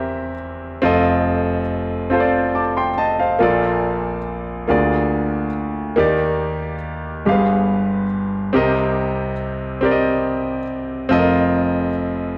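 Moving in a slow 6/8 at 47 dotted-quarter beats per minute with a straight feel, this short gospel excerpt cut from a longer piece carries a jubilant, hopeful mood across roughly 12.4 seconds. A solo grand piano, clear and intimate with audible action noise, sits up front and spans from F1 to D6, moving through rich seventh chords such as Bbmaj7, Ebmaj7 and G7b9 before settling on F7sus4 at 11.1 seconds. The piano rings in a recital hall with a fairly wet reverb, and its tuning sits at A4 = 443 Hz.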